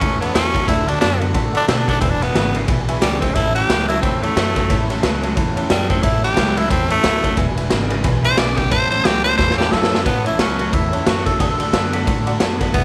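Swung eighths at 179 BPM in 4/4 drive this rowdy, retro rockabilly cut in A major, with a raw, gritty garage drum kit of punchy kick, medium-tuned snare and ride sitting up front in a pumping stone room, over a woody, thumpy pizzicato upright bass. A raspy, close-miked tenor saxophone solos from the start to 10.1 s with scooped notes, light vibrato and slapback echo, while a twangy, slightly broken-up electric guitar plays a riff through a phaser in the background. A jangly, detuned honky-tonk upright piano and a very quiet, full-bodied dreadnought acoustic guitar with finger squeak fill out the accompaniment over A, D and E7; a drum fill at 9.4 s leads into the next section, where the piano adds a short fill at 12.2 s.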